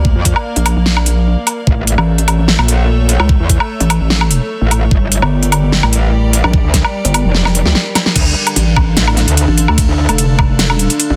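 A metallic, FM-edged wobble bass snarls up front beside a detuned, pulsing pluck wobble bass in this heavy, chaotic half-time dubstep drop cut from a longer piece, driven by an overdriven knocking electronic kick and a tape-toned big-room kit of huge snare, crisp hats, ride, crash and woodblock that rolls into a fill at 7.3 seconds, while a bright, morphing wavetable pad pumps behind over Bb, A and Gm before a mellow, deep ambient pad slips in at 9.4 seconds, shortly after the harmony lands on Dm, all under a dense, heavily limited master.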